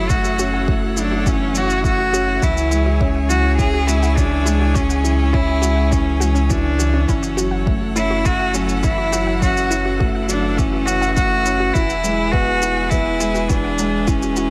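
This cinematic, moving piece of piano and strings electronica sits in light reverb and digital ambience, with a clear, up-front solo cello carrying the melody in F# minor at 103 BPM in a straight 4/4. Around it, a bright string quartet holds sustained chords with focused chamber vibrato, while a felt-muted upright piano plays a soft, boxy riff. A deep, round sub bass with sidechain pumping anchors the low end, and a very quiet, detuned sawtooth pluck adds arpeggios from 0.1 seconds. A layered electronic kick drum with a tape-warm, small-room character and a shaker drive the rhythm. The harmony moves from F#m7 to C#m, back to F#m7 and on to E, in a short cut from a longer piece.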